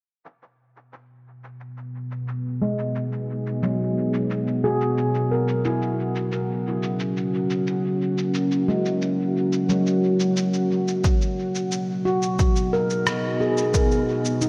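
A deep, dark pad built from detuned sawtooth and sine layers with a sub octave sits up front from 1.5 seconds, holding slow-attack chords thickened by chorus and its own reverb. This spacious, hazy ambient dub piece moves at 89 BPM in 4/4 and G# minor, drifting from G#m7 to F#7 and back. A muffled, tape-toned electronic shaker and rim click open the piece, low-pass filtered and trailed by dub echo. At 2.6 seconds a ringing nitrided-steel handpan adds bright, airy arpeggios struck with sharp finger strokes and softened by a low-pass filter and tape echo. A punchy, overdriven electronic kick arrives up front at 11.0 seconds. Filter sweeps run across the pad, handpan and percussion, and a cathedral reverb with a 5.9 second tail soaks the dreamy mix of this section cut from a longer piece.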